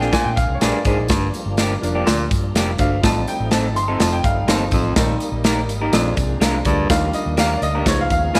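A clear, slightly worn grand piano takes the lead in this short slice of uplifting, joyful 1960s-style soul, carrying a solo across the whole 8.4 seconds over a straight, brisk 4/4 groove. Beneath it, a dark, round muted electric bass with transformer saturation and an airy, polished country drum kit, with a punchy kick, medium-tuned snare and hi-hat sitting up front, drive the rhythm. An electric guitar through a small old amp adds lo-fi, slightly broken-up picked stabs, while a very quiet tonewheel organ holds full, lightly overdriven chords through a slow rotary speaker with chorus vibrato. From 0.1 seconds a smooth-topped baritone saxophone plays a low jazz-style riff with scooped notes, and a jingly, bright tambourine sits in the background. The harmony moves through dominant and seventh chords such as Bb7, Gm7 and F7 before landing on Ebmaj7 and a closing Db7, all bathed in a moderate echo-chamber studio reverb.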